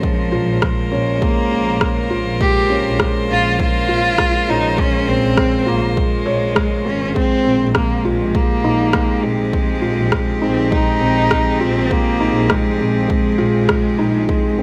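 A bowed solo cello carries the melody up front, its tone rich, focused, nasal and a little boxy with vibrato, in this cinematic, moving piece of piano and strings electronica, cut from a longer work. It sits at 101 BPM in a straight 4/4, in Bb dorian, with the harmony resting on Bbm7 before shifting to Fm7 over Bb at 7.2 seconds. Beneath it, a felt-muted upright piano repeats a mellow, intimate riff through a digital delay, and the thick felt and audible action noise give it a hushed, dark character. A close chamber string quartet holds sustained chords with a reedy, gut-string period tone, light vibrato and an airy bow, and its chords pump under sidechain compression. A bowed studio double bass section enters at 0.3 seconds, playing sul tasto with a soft attack and a pure, floating sound, and it pumps in the same way. A punchy, layered electronic kick and a produced electronic rim click, which joins at 0.6 seconds, drive the groove in small room ambience, and light reverb surrounds the mix.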